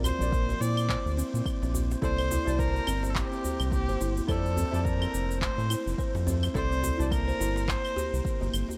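Dry, this peaceful organic downtempo excerpt sets a rich, bowed kamancheh melody with vibrato and portamento over a buzzing, woody kalimba arpeggio, a dark, chorused chord stab pumping in the background, a round analog bass up front, a tape-colored electronic kick with claves, shaker and handclaps, a very quiet, cracking djembe, and a breathy, wind-like tuned noise texture that enters at 1.3 seconds.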